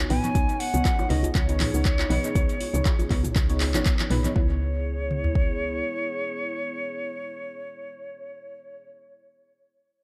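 Afro house at 120 BPM in C# minor, this spiritual, hypnotic excerpt opens directly on a drop that lasts until 4.4 seconds, moving from a Badd9 chord to C#m7. A deep, moody analog pad, detuned and wave-folded with a slow attack, holds sustained chords beneath soft, deep chord stabs that pass through chorus, phaser, cassette tape and tape echo, both pumping against the kick. A woody FM bass with a fast, decaying attack anchors the low end until 5.8 seconds, while a silver concert flute carries the airy, vibrato-laced melody through analog delay across the whole passage. The electronic afro-pop kit supplies a deep kick and toms, and a layered deep house kit adds cabasa, handclaps, toms and metallic hats, overdriven and echoed. A medium-tuned djembe and close, dry congas played with hard hands sit very quietly in the mix, all the percussion falling away by about 5.5 seconds. The bass follows shortly after, leaving the flute, pad and stabs in a lightly reverberant, echo-heavy space.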